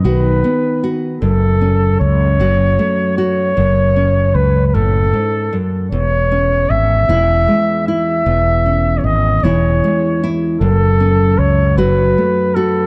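Pastoral and warm, this short acoustic folk passage in 6/8 sets a clear flugelhorn melody, touched with light vibrato and tape echo, over a full-bodied, fingerpicked nylon-string guitar that moves from B to F#m and C#m/E before returning to F#m. A round, dark fretless electric bass sits up front beneath them and drops out at 12.2 s, just before the other two finish at 12.9 s. The sound is dry and close, in the manner of a 1970s studio, with some lossy compression artefacts.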